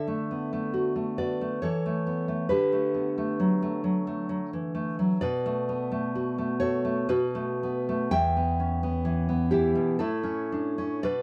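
A romantic piece for solo classical guitar, this brief excerpt is sunny and unhurried, moving in 3/4 at a rubato pace between 54 and 70 BPM in D major, with tuning set to A4 = 444 Hz. The lone nylon-string guitar is fingerpicked and sits up front for the full 11.2 seconds, ranging from E2 up to G5. Its tone is warm, full-bodied and deep, carried by fresh strings. The harmony sets out from D, passes through A over E, returns to D, then drifts to B5 at 5.2 seconds and E minor at 8.1 seconds before landing on A at 10.0 seconds, leaving the phrase open as the excerpt ends. A light reverb and the sense of a single shared room give the playing a natural, intimate presence.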